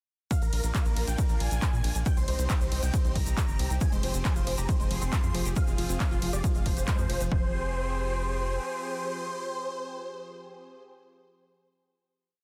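This short, euphoric uplifting trance piece opens straight into a driving drop, where a huge, detuned supersaw lead with phaser and delay repeats a riff over a pedal note, backed by a thick chorused unison pad, a punchy four-on-the-floor kick, a drum machine's handclaps, hi-hat and ride cymbal, a grainy egg shaker in the background, and a tight, rolling sequencer bass. At 3.8 seconds a mellow, wave-folded unison pluck adds an arpeggiated sequence with tape echo, and the lead, pad, bass and pluck all pump against the beat. The drums drop out at 7.3 seconds, and the bass carries on until 8.6 seconds while the lead and pad ring out on a final chord in a dense, heavily limited, nearly dry mix.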